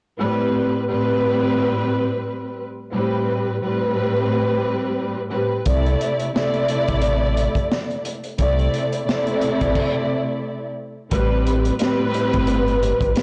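The recording sounds blown-out and overdriven, with a dull, capped top end, light studio reverb and a tape-worn haze over the strings. This moody, gritty boom-bap hip-hop fragment, cut from a longer piece, sits at 88 BPM in 4/4 with a swung sixteenth-note feel, in A minor tuned slightly flat to A4 = 438 Hz. A dark, lush bowed string ensemble opens alone, up front and woody with soft attacks, a smooth top and vibrato, holding an Am9 chord before moving to C69. At 5.7 seconds a crunchy breakbeat kit joins, with a punchy kick, a high-tuned snare, hi-hat, crash and shadowy cymbals recorded in a small room with a saturated, rolled-off character. A deep, mellow sine sub bass with an octave layer and tube saturation enters at the same moment, sustained and fast in attack. The music halts briefly at 9.8 seconds, then at 11.1 seconds a new section returns to Am9.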